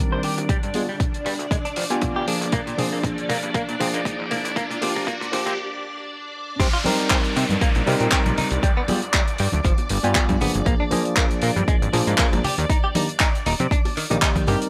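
Groovy and sensual, this nu-disco excerpt in C minor moves at 118 BPM with a light swing. A punchy, up-front electronic kick and a dry, damped 70s drum kit with dark cymbals and handclaps anchor the groove, while a fat, saturated analog bass and a clean, compressed guitar riff with lush chorus and tape echo ride over a worn, slightly out-of-tune tine electric piano and a mellow string machine with sidechain pumping. A filtered build-up with a background riser and a drum fill leads to a brief break at 5.6 seconds, and the drop at 6.6 seconds brings in bright maracas, congas and bongos over chords moving from Cm7 through G7b9 and Bb7 to Ebmaj7.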